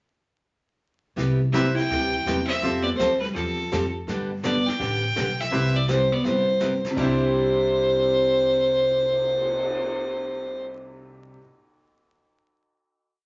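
Down-home and playful, this swinging western swing piece puts a clear, biting fiddle up front with light vibrato and song-like motifs, shadowed by a dark, clean hollow-body electric guitar playing a harmony line mostly in thirds, over a full-bodied dreadnought acoustic guitar picking four to the bar, a woody, thumpy upright bass walking up between two-beat roots and fifths, a brilliant upright piano comping in close, syncopated voicings that drops out at 2.8 seconds and returns at 5.5, and a background brush kit with dark cymbals keeping a backbeat with snare sweeps, all wrapped in wet studio reverb and vinyl crackle before settling on a final chord at 7.0 seconds.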